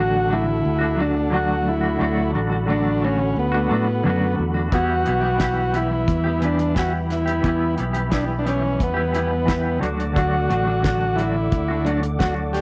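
An up-front vintage combo organ with light vibrato and slapback echo carries the melody in this trippy, mysterious psychedelic rock excerpt at 88 BPM, over soft, flute-like tonewheel organ chords with chorus vibrato and key click in the background, a double-tracked, clean hollow-body guitar riff with tremolo, and a warm, amped fingered bass, while a dry, dark, cloth-damped drum kit with a fat snare and tight kick joins at 4.7 s as the harmony moves from D to Em and back to D in light studio reverb.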